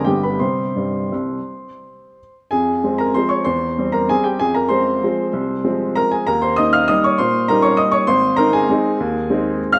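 Classical piano waltz in 3/4, played with a rubato feel that gives this short excerpt cut from a longer piece a wistful, elegant mood. A single upright piano, clear and woody with long sustain, sits up front and spans G1 to F6, moving from an opening passage into a second section at 2.5 seconds where the harmony settles on F minor before passing through E-flat and A-flat. A moderate recital hall reverb and a dark production frame the playing.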